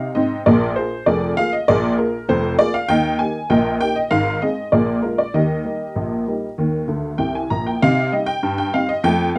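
A straight 2/4 pulse at 98 BPM drives this cheerful, playful ragtime clip in Eb major, cut from a longer piece and played by a solo honky-tonk upright piano whose detuned, jangly, woody tone with short sustain sits up front in a dry, close 1970s-style studio sound with light reverb, ranging from F1 to Bb5 and breaking into a fill at 6.9 s before shifting to a C minor chord at 7.8 s and ending at 9.4 s.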